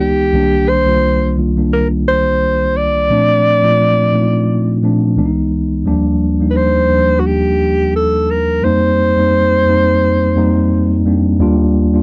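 A slow soul groove at 87 BPM in 4/4, with a light swing on the sixteenths and tuning set to A4 = 438 Hz, gives this bittersweet, cinematic fragment of a longer piece its relaxed pulse. A mellow tine electric piano carries the accompaniment with a clean, direct tone, moving through Cm7, Bbmaj7 and Dbm7 before the second section opens at 5.9 seconds on Ebmaj9, then F9sus4 and back to Ebmaj9. Up front beside it, a breathy alto saxophone sings the solo melody in a jazz style, its subtone colored by vibrato, scooped notes and a smooth top. The saxophone falls silent at 11.1 seconds, leaving the electric piano alone until the close at 12.0 seconds. The recording sounds dry and close, like a 1970s studio session touched with light reverb, which keeps both parts warm and intimate.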